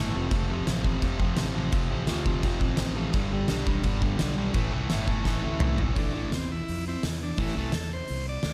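Swaggering and raw, this short cut from a longer garage rock piece drives at 170 BPM in a straight 4/4, centred on A minor. A bright, double-tracked fuzz guitar riff sits up front from the start alongside a round, dark fingered bass thick with overdrive, the harmony moving from F to G and landing on A minor. An oversized, low-tuned acoustic kit enters at 0.3 seconds, its punchy kick, fat snare and dark cymbals saturated and gritty in a pumping stone room. A drum fill at 5.3 seconds leads into a vintage combo organ, whose buzzy, overdriven solo takes over from 6.0 seconds while the guitar carries on until 7.7 seconds. A small room ambience binds the whole together with a raw, live-in-the-garage edge.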